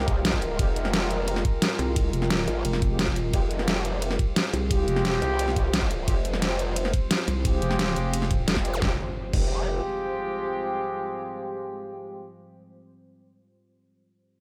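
Dark technical drum and bass at 175 BPM in F minor, this futuristic, tense drop sets a growling, detuned, overdriven bass and a heavy, pulsing pluck wobble bass against a layered electronic kit with a knocking kick, a deep overdriven snare, hi-hat, ride and crash cymbals, while a mellow, wave-folded ambient pad with sampler grit and sidechain pumping sustains an Fmadd9 chord beneath roomy brass stabs with delay and light vibrato. Electronic zaps and impacts enter at 8.7 seconds, and once the drums stop at 9.4 seconds, they close the passage.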